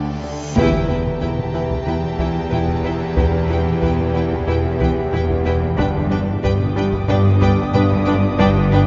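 This cinematic suspense score fragment has an eerie, mysterious mood, built on a full symphonic string body. Violins carry a vibrato-laden, soft-edged melody over a second violin line, a focused high violin texture and a viola accompaniment. Cellos and woody double basses anchor the low end, joined by a fat, detuned analog synth bass riff and a tense, nasal bowed-like drone with its own built-in reverb. The opening gesture is a huge, bright reverse cymbal rising into an impact at 0.6 seconds, where a mellow French horn section enters with sustained chords and a close, dry taiko ensemble comes in with heavy sticks. The harmony moves from a suspended opening into E minor, then shifts to G at 5.8 seconds, all washed in a spacious concert hall reverb with a dark, rounded top end.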